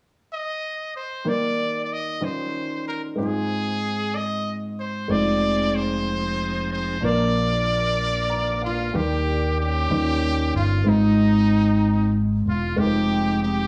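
Opening on a brilliant, forceful solo trumpet with slapback echo and scooped, vibrato-laden notes, this jubilant gospel excerpt in Eb major moves in a slow 6/8 at 62 BPM as a warm, short-sustained baby grand piano joins for accompaniment, a round, punchy fingered electric bass and a shouting, lightly overdriven tonewheel organ with slow rotary speaker and chorus vibrato arrive at 5.1 seconds, the piano adds a fill just before the organ drops out, and a smooth-topped horn section enters softly in the background at 8.7 seconds over chords cycling from Ebmaj7 and Eb13 through Ab6 to Fm7, all set in a small room with an echo chamber reverb.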